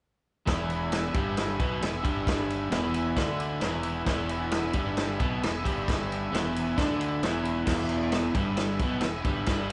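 Garage rock, swaggering and rowdy, at 133 BPM in a straight 4/4: from 0.5 to 9.7 seconds a crunchy, double-tracked overdriven guitar riff and a punchy fuzz bass drive over an E chord, with a tight-kicked vintage drum kit with dark cymbals up front and a buzzy combo organ holding sustained chords through spring reverb in the background, in a short cut from a longer piece captured as a band playing live in one room with light reverb and a muted high end.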